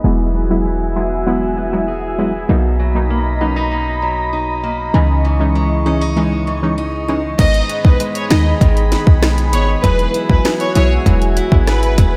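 A dreamy mix soaked in a lush hall reverb opens this short cut from a longer dancehall piece in G# minor, moving at 98 BPM with a sultry, bouncy mood. From the start, a glassy, ethereal FM pad holds dark, slow-blooming chords under ensemble chorus and sidechain pumping. Punchy sawtooth brass stabs with a filter pluck play the accompaniment, and a woody, boxy parlour acoustic guitar picks arpeggios through an analog delay. Underneath, a deep, boomy 808-style bass sits up front with a clean sine tone. A filter sweep runs across the opening as the harmony moves through Eadd9, Bmaj7 and C#madd9. At 7.4 seconds an electronic island pop kit arrives with a tight kick, sharp snare, rim clicks, hi-hats and crash, while a clear, focused violin section adds a bowed, vibrato-rich melody over G#m and Eadd9.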